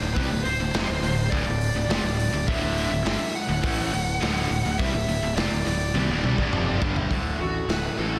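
A dense, heavily limited modern master with light reverb and small room ambience frames this short cut of anthemic, bittersweet quiet-loud alternative rock at 104 BPM in 4/4 over D, where a dark, distorted bluesy lead guitar with digital delay carries the melody above a stack of picked riff guitars: a double-tracked fuzz guitar, a bright overdriven one in the background and a very quiet tight distorted one. A growly, punchy fuzz fingered bass and an up-front, saturated garage drum kit with a punchy kick, medium-tuned snare and rolled-off top drive the riff, the drums taking a fill from 5.9 to 7.1 seconds. At 7.1 seconds the fuzz and tight guitars drop out as the lead turns to a solo and a slightly broken-up guitar through a small old amp enters with delayed arpeggios.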